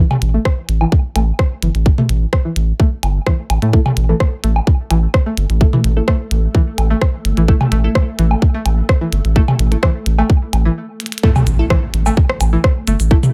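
A dry, close-sounding cut from a longer minimal techno track at 128 BPM in a cool, hypnotic mood, where a tight, tape-warm electronic kick and a round, deep analog bass sit up front under clicky hats, rim clicks and shaker from a minimal kit, overdriven electronic toms and woodblock, and a twangy, string-like resonator pluck riff with chorus, dub echo and a filter sweep, joined at 3.7 seconds by crisp, warbling wavetable chord stabs and at 5.4 seconds by a swarming, detuned drone in the background, before a brief stop and a drum fill lead into the drop at 11.2 seconds, marked by a very quiet electronic impact.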